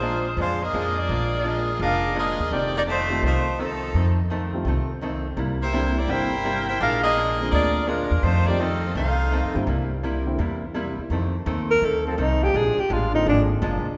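A loose, clear saxophone section carries the melody up front in this energetic, brassy big band swing cut from a longer piece, playing with vibrato and a soft attack until 9.6 seconds. The tempo is a brisk 168 BPM in 4/4 with a swung eighth-note feel, and the harmony moves among Bb7, F7 and C7. Underneath, a woody, thumpy pizzicato upright bass sits up front, joined by a clean, compressed, picked hollow-body archtop guitar and a polished grand piano that stays in the background. At 11.7 seconds a breathy alto saxophone takes a close-miked, intimate solo, its whispered subtone and scooped notes standing out as the loudest voice. A tight, very quiet trombone section enters at 12.1 seconds with sustained chords in light vibrato, and the whole ensemble sits in a wet concert hall reverb.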